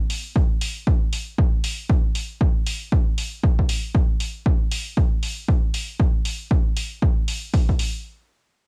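A tape-softened electronic hi-hat opens this relaxed, soulful deep house excerpt, joined at 0.4 seconds by a punchy analog kick drum that sits up front and louder than the hat. The two drums run at 117 BPM in 4/4 with a 60% swing on the sixteenths, giving the groove an easy, loping feel. Both parts carry the warm character of a home cassette recording, re-recorded in a small room with little reverb, so the sound stays close and dry.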